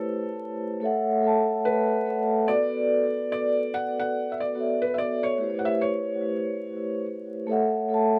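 Hazy and reflective, this short slice of a longer hip hop piece drifts at 72 BPM with a swung 16th-note feel, as a felt-muted upright piano with audible action noise carries the melody through a low-pass filter and analog delay until 7.0 seconds, while a vibraphone played with soft mallets rings out its vintage, band-limited chords with slow motor vibrato over changes from A7 to Bm7 and back to A6, all in a small room with a rough home-demo character and vinyl crackle.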